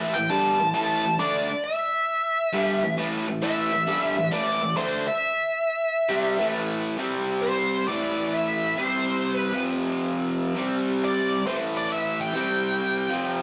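A bluesy lead guitar, distorted and run through wah, carries the melody up front from 0.1 seconds over a bright, double-tracked garage guitar riff with raw overdrive, in a heavy, smoky rock excerpt at 134 BPM with a swung feel in A minor, moving through A5, C5 and F5 chords and captured in a rough rehearsal-room recording with warm saturation and a wet stone-room reverb.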